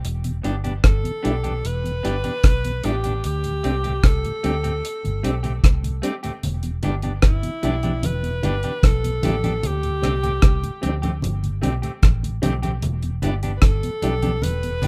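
A rough home-demo mix with light reverb carries this meditative, serious roots reggae passage at 75 BPM in E minor, where a dry, dark drum kit with tight kick, hi-hat and rim click sits up front beside a round, foam-muted fingered electric bass, while a mellow tonewheel organ with key click turns through chorus vibrato and a slow rotary speaker, a clean picked electric guitar trails tape echo, a bright alto saxophone with vibrato carries the melody through its own tape echo over Em7 and D7sus4, and damped, thick-skinned congas join in the background at 6.4 s.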